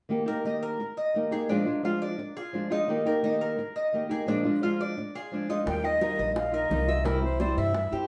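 A small, fingerpicked nylon-string guitar opens this sunny Cuban son and guajira excerpt in Eb major at 173 BPM, joined almost at once by up-front arpeggios on a metallic, double-strung tres carrying tape echo. At 5.7 seconds, as the harmony moves from Eb and Bb7 to Ebadd9 and C, a breathy, straight-toned concert flute takes the melody, a woody, thumpy pizzicato upright bass enters up front, and round, low-tuned bongos played with soft hands sit in the background. The whole is set in a wet studio reverb and heard from further back in the room, and the passage is cut from a longer piece.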